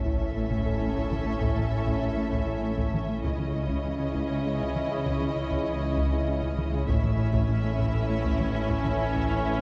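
Futuristic and relentless, this cinematic excerpt of a hybrid orchestral and electronic film score moves at 66 BPM in a straight 6/8, shifting from A to C#madd9 at 3.2 seconds and back to A at 6.9 seconds. Lush, vibrato-laden violins carry the melody over a focused second violin line, smooth violas, sustained French horn chords with a vintage tint, and a nasal, evolving analog drone with chorus, while a woody cello section, a distant double bass section, a clean sine sub bass and a smooth sawtooth synth bass riff anchor the low end. A taiko ensemble struck with heavy sticks drives alongside a mellow, ring-modulated pluck arpeggio, and an electronic sub drop marks the opening impact, lasting until 1.4 seconds, all set in a dark production with moderate scoring stage reverb.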